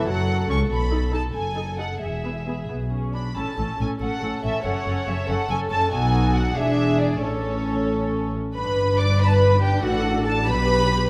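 In a 6/8 with uneven, rubato beats, this quick, lively and graceful classical-period movement for string orchestra is cut from a longer piece. A dark, bowed sul tasto violin section carries the melody with light vibrato, over a floating second violin line, rich viola accompaniment, intimate, close cellos and warm double basses in the bass. Moderate scoring-stage reverb surrounds the ensemble, and the music turns to a new section at 8.6 seconds.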